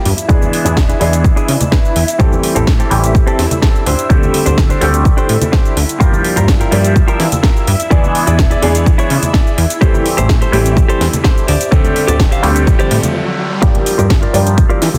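Filtered disco house at 126 BPM in G dorian, sensual and funky, this excerpt sets a punchy, up-front electronic kick and a cracking, metallic-hatted house kit with very quiet ringing tambourine and congas under a plucky sawtooth analog bass, a brilliant grand piano with phaser, a bright clean direct-recorded guitar riff and a swirling vintage string machine in the background, all but the percussion and kick pumping against the sidechain and moving through a filter sweep that ends with a faint riser from 11.4 seconds and a short break at 13.2 seconds before the Gm7 returns at 13.6 seconds.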